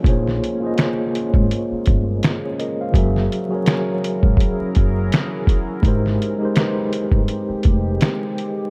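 A dark, gently crackling vinyl haze with light reverb frames this short lo-fi hip hop excerpt, dreamy and mellow at 83 BPM in Ab major, with a swung 16th-note feel. A sampler-style drum kit sits up front, compressed and muffled, with a thumpy kick, a fat snare, hi-hat and finger snaps running from the start until 8.6 seconds. Beneath it, a woody pizzicato upright bass holds the low end until 8.0 seconds. A clean tine electric piano, also up front, carries the accompaniment through a cassette-tape coloring and a low-pass filter. Behind it, a deep, moody pad of detuned sawtooth and sine layers with a sub octave swells in slowly, softened by chorus, its own reverb and filtering. The harmony moves from Bbm7 to Gb9 at 2.9 seconds and settles on Abmaj9 at 5.8 seconds.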